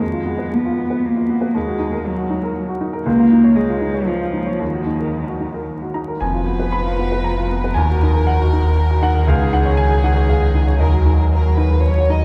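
Melancholic and reflective, this short neoclassical passage for piano and strings moves in a flexible, rubato triple time, cut from a longer piece. A clear baby grand piano carries the accompaniment from the opening, sitting up front with short sustain across a broad range, while a single bowed cello sings a second line with vibrato and expressive portamento. At 6.2 seconds the phrase begins again, and a chamber violin section enters with the melody, its soft attack and light vibrato giving an intimate, close ensemble sound. A deep, full sub bass with an added octave arrives at the same moment, its sustained sine tone placed up front beneath the harmony. The cycle of Fdim, Ebm and Dbadd9 chords repeats under a long, wet cathedral reverb, with a thread of vinyl crackle and the air of a church or concert hall.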